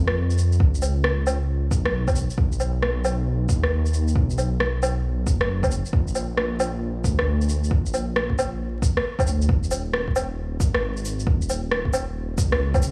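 Ghostly and rainy, this future garage excerpt moves at 135 BPM in Eb minor with a 64% swing on the sixteenths, built on a dark, rumbling detuned saw bass that pumps against the sidechain from the start, an overdriven deep electronic kick entering at 0.6 seconds, and up-front, gritty electronic rim clicks, shaker, woodblock and cabasa, all wrapped in light reverb, vinyl crackle and small room ambience before the arrangement shifts into a new section at 9.5 seconds.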